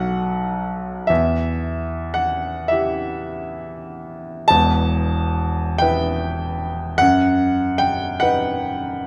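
A clear, intimate grand piano sits up front in a moderate recital hall reverb, its natural tone carrying audible action noise from the instrument itself. This brief cut from a romantic nocturne for solo piano unfolds in 12/8 with free rubato, its melancholic, wistful mood moving from a B7 chord to E minor at 1.1 seconds. The music passes into a contrasting second section at 4.5 seconds before settling on B over F# at 7.0 seconds, with the piano reaching from deep bass notes up to the upper middle register.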